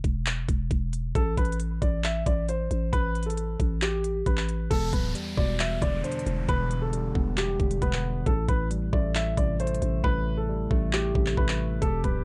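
A growling, buzzy 808-style bass and a trap drum kit with a knocking kick, crisp hats and 12-bit sampler grit drive this dark, melancholic half-time trap excerpt at 135 BPM in E minor, as a mellow concert grand piano carries the melody from 1.2 s, an overdriven tine electric piano with analog chorus and a faint downlifter arrive at 4.7 s over Em7 and Am7 chords, the hi-hats briefly drop out, and a soft-attack woodwind section sustains chords from 11.8 s in a dry, up-front mix.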